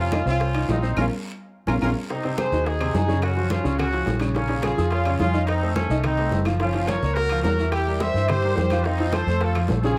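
A fiery, passionate salsa excerpt at 213 BPM opens with a brilliant, vibrato-tinged horn section up front with plate reverb, a clear, polished concert grand piano and a dark, round, foam-muted electric bass, joined at 0.1 seconds by thick-skinned congas, woody claves, raspy guiro, tight high-tuned bongos and ringing timbales, with a band accent and drum fill leading into a passage whose chords run from Ab7 through Gbmaj7 and F7b9b13 to F7.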